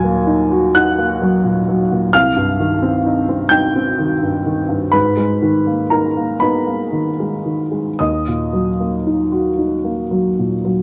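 An intimate, up-front recording in a small room with moderate reverb carries a woody, slightly detuned upright piano, its action noise audible, playing alone through this wistful neoclassical minimalist excerpt in a rubato 6/8, moving from Ebm through Cm and Abmadd9 before settling back on Ebm at 8.0 seconds.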